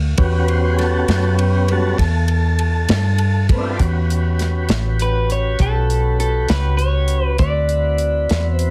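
A round, foam-muted electric bass opens this gritty, laid-back slow blues in A mixolydian, a 12/8 groove at 67 BPM cut from a longer piece, with a dark, dry soul drum kit and a smooth tonewheel organ turning through a slow rotary speaker arriving at 0.2 seconds; the organ takes the featured solo until 3.8 seconds over an A13 chord. At 5.0 seconds an up-front, slightly broken-up picked electric guitar through a small old amp enters with a melody touched by slapback echo, and the harmony moves to D13 at 7.4 seconds. Light reverb and heavy, radio-style compression give the whole track a squeezed character.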